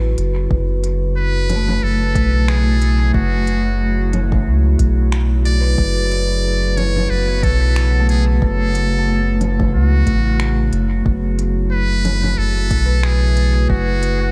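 Over a swung 4/4 pulse of a deep electronic kick and congas, finger snaps and smooth hi-hat touched with dub echo, this meditative, hazy ambient dub excerpt rests on a single minor chord, with a round, up-front sub bass, a warbling, nostalgic pad of sustained chords, ringing vibraphone arpeggios with tape echo, and a buzzy, close-miked muted trumpet melody that enters at 1.2 seconds.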